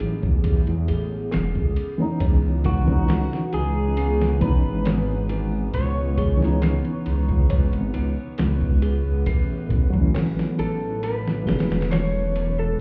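Trip hop at 68 BPM in C# minor, smoky and melancholic, cut from a longer piece, with a gritty, thumpy sampler-style drum kit and a deep, rumbling detuned saw bass up front, while a felt-muted upright piano with tremolo, a moody analog pad with chorus and a slightly out-of-tune music box with tape echo sit in the background over A6 and C#m9 chords. A very quiet clay-shell darbuka joins at 1.3 seconds, and at 2.7 seconds a slightly broken-up electric slide guitar played with fingerpicks carries the melody through tape echo. The whole mix sounds muffled, as if heard through a wall in a club.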